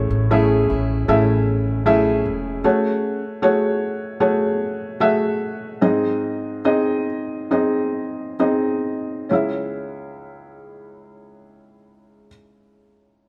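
A felt-muted upright piano anchors this short pop excerpt, its soft, mellow tone close and intimate, with a short sustain that keeps each chord hushed as it carries the accompaniment through the full 13.3 seconds. The mood is emotional and heartbroken, in C# minor and 4/4 with a straight feel, moving at around 66-78 BPM and slowing down between 2.6 and 9.3 seconds. At the opening, a fingerpicked plugged-in steel-string acoustic guitar adds dark arpeggios until 3.2 seconds, while a pizzicato upright bass with a woody, up-front sound plays low notes until 2.6 seconds. The harmony moves from Amaj7 through F#madd9 and G# before settling on C#m as the second section arrives at 9.3 seconds. Light reverb gives the sense of a band playing live together in one room.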